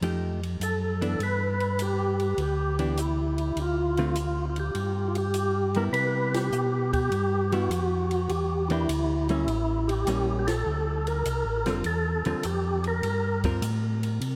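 Wrapped in a moderate, vast, echoing cathedral reverb, this swinging, greasy soul jazz organ trio moves at 102 BPM in 4/4, shifting from G major to C major at 5.9 s, with band accents at 6.2 and 10.4 seconds over lush extended chords. A fat, lightly overdriven tonewheel organ sings the melody up front with percussive key click and chorus vibrato through a slow rotary speaker, while a second, mellow and round tonewheel organ carries the bass, also through a slow rotary. A clean, picked hollow-body electric guitar adds dark, compressed accompaniment, and a compact cocktail kit of hi-hat, ride, snare and kick sits dry and natural further back, with a high-tuned snare and punchy kick.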